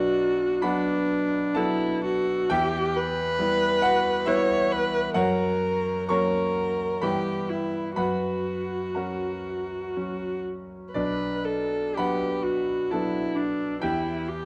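Melancholic and yearning, this fragment of a romantic classical duo in B minor drifts in a rubato 3/4 at around 57-69 BPM, as a single bowed viola sings a rich, focused melody with vibrato up front while a bright concert grand piano accompanies with brilliant upper notes and deep bass, all bathed in a moderate large-studio reverb and a dark production.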